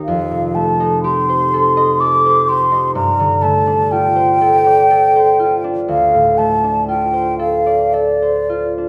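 In a rubato 3/4, this luminous, pastoral impressionist classical passage, cut from a longer piece, sets a hollow, pure-toned concert flute up front, singing the melody with soft attacks, vibrato and lifted highs, over a fingerpicked concert harp whose ringing, mellow accompaniment moves through F9, G9sus4 and Dm7 in under 9 seconds, both bathed in the wet reverb of a recital hall or church.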